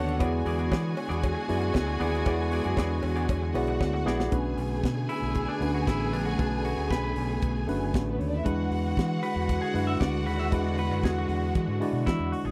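Disco cut from a longer piece at 116 BPM in B dorian, driving and glamorous, where a tight funk drum kit with a high-tuned snare and an overdriven, punchy fingered electric bass sit up front, a very quiet metallic cowbell sounds until 3.9 seconds, shortly after a drum fill begins at 3.8 seconds, a bright, compressed semi-hollow electric guitar takes a clean solo from 4.3 seconds over a worn, slightly out-of-tune tine electric piano, an expressive bowed violin section with vibrato and portamento carries a second line, and a smooth symphonic string section holds sustained chords in the background, captured in a dry, close 1970s-style studio recording.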